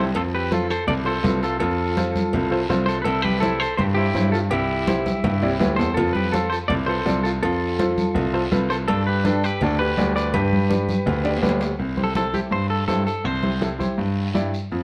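Sunny and festive, this cumbia excerpt moves at 165 BPM in C major. A twangy, clean electric guitar carries the melody up front with spring reverb, over a woody upright piano accompaniment and a baby grand piano holding down the bass, while bright congas and a raspy guiro run through to 14.8 seconds. Ringing cowbell and timbales sit in the background until 11.7 seconds, drum fills mark the turns, and the chords move from F to C, F and G before landing on C6 in a dark, lightly reverberant production.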